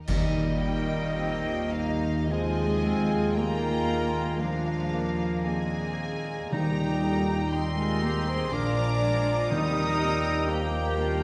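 A very quiet, ringing concert harp opens with arpeggios, and the orchestra joins at once on an accent, with dry clash cymbals and concert bass drum sounding only until 2.3 s, in this serene, gently rubato romantic slow movement in three. A dark violin section carries the intimate sul tasto melody, while airy flute, bright clarinet, oboe and a softer background violin section play second lines, and mellow bassoon with a floating, very quiet viola section accompanies. Distant French horns and clear trombones hold chords, trumpets add tight stabs, and hard-mallet timpani play until 10.9 s, as up-front double basses and background cellos anchor the bass inside a lush scoring-stage reverb.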